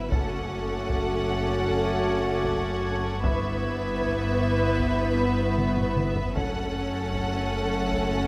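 A steady, straight 4/4 pulse at 77 BPM underpins this brief excerpt of a mysterious, tense suspense film score in F# phrygian, with harmony shifting from F#m to Em/G and back to F#m. A heavy-stick taiko ensemble sits close and dry in the background, breaking into a drum fill from 5.6 to 6.4 seconds. At the bottom, a dark double bass section and an intimate cello section with light vibrato hold the bass, doubled by a deep, ominous rumbling drone with a detuned, ring-modulated edge and its own reverb. A mellow French horn section sustains chords in the middle, while a distant viola section accompanies with soft, sul tasto bowing. Above them, a clear, floating violin section carries the melody over a smooth second violin line. A shadowy, high violin texture hovers over the top until 5.9 seconds, and a moderate scoring-stage reverb surrounds the ensemble.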